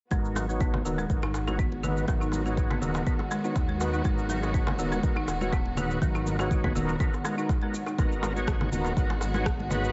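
Afro house at 122 BPM in G# minor, this short cut from a longer piece feels earthy and hypnotic, riding a lightly swung 16th-note groove over a single G#m7 chord. An up-front electronic kick drum anchors the pulse, joined by a tape-warm layered cabasa and rim click, very quiet close and dry congas, and a clay-shelled darbuka sitting in the background. A dark, rumbling detuned saw bass fills the low end with a beating, saturated tone. A folk marimba struck with hard mallets spins woody, rustic arpeggios through a low-pass filter and tape echo until 8.0 s, while a gritty overdriven tonewheel organ punctuates with stabs colored by chorus vibrato and a slow rotary speaker. Behind them, a lush symphonic string section holds sustained chords with vibrato and portamento, and the strings, marimba, organ and bass all pump against the kick for a breathing, small-room mix capped in the highs.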